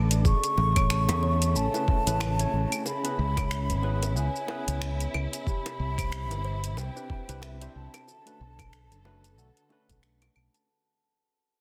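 A mellow, hollow concert flute with vibrato carries the melody in this sunny sunset chillout cut at 92 BPM with a light 16th-note swing, as woody kalimba arpeggios and a clean tine electric piano, both with delay, sit over lush, dark bowed strings, an up-front fingered electric bass, a gritty overdriven electronic kick, a deep house kit of claves, finger snaps, metallic hi-hat and shaker, and tight high-tuned bongos in the background, moving through Amaj7, C#m7, Cmaj7 and Bm7 in a dense, small-room mix that fades out from 0.2 seconds.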